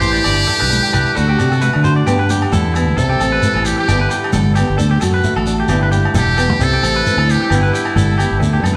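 A buzzy, brilliant muted trumpet sits up front with light vibrato and a soft attack, carrying a jazz-inflected solo melody through this joyful, sunny highlife excerpt at 132 BPM, with a gentle 16th-note swing in G major over a G6, D and C progression. Beneath it, a boxy fingerpicked acoustic guitar, a twangy, slightly broken-up electric guitar playing arpeggios, and a round, fingered electric bass fill out the band. Bright, thin-skinned congas, a grainy, band-limited shekere and ringing agogo bells, which enter at 0.2 seconds, sit quietly in the background, all played live together in a stone room with a wet reverb.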